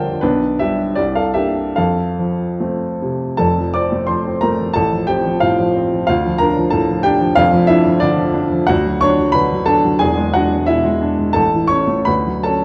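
This romantic classical character piece for solo piano, cut from a longer work, moves in a hopeful mood at a flexible 72-94 BPM in 2/4, with free rubato in F major. The upright piano sits up front with a woody, smooth, vintage tone and short sustain, ranging from E1 to D6 and heard throughout the 12.6 seconds. A wet recital-hall reverb and a dark, warm production surround it, while the harmony shifts after 3.4 seconds from F major through D minor and E7 before settling on Dmaj7 at 12.1 seconds.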